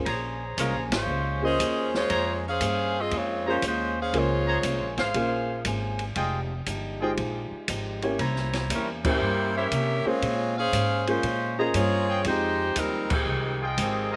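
A swung 4/4 groove drives this sultry, brassy big band swing excerpt, with an open jazz drum kit of dark cymbals and a boomy kick, a woody, thumpy pizzicato upright bass, and a short-sustain upright piano comping over Bbm9, Fm9 and C7b9 harmonies. A boxy, picked old ladder-braced acoustic guitar sits in the background with slapback echo, while a clear, vintage trumpet section with vibrato punches out stabs through the same echo. Up front, a bright saxophone section carries the melody with light vibrato and a soft attack, drops out at 5.0 s and returns at 8.7 s, all in a dry outdoor sound.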